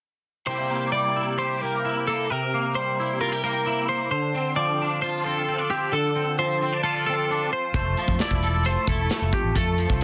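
A bright, compressed twelve-string electric guitar plays intricate arpeggios up front alongside a clean, picked twangy electric guitar with ensemble chorus carrying the accompaniment over C7, Dm7 and Fmaj7 in this wistful math rock and midwest emo excerpt at 132 BPM in 4/4. At 7.7 seconds a round, amped fingered electric bass and a modern studio drum kit with a punchy kick, medium-tuned snare, hi-hat and rolled-off top enter together. The mix sits in light reverb with a dense, heavily limited modern master.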